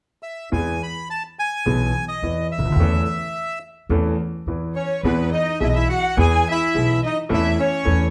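Tango with a playful, elegant mood, this short excerpt from a longer piece moves in four with a loose, rubato feel. The bandoneon carries the melody from 0.2 seconds, its reedy, bright tone sitting up front. A clear grand piano, smooth and vintage in character with a short sustain, also sits forward with the accompaniment, while an upright bass, plucked pizzicato on gut strings, adds a woody, dark and thumpy bottom. At 4.8 seconds a single bowed violin enters with a second line, expressive with vibrato and portamento, heard at a slight distance. The harmony shifts between E and A over E, and the band plays together live in one large studio room, with a moderate reverb around them.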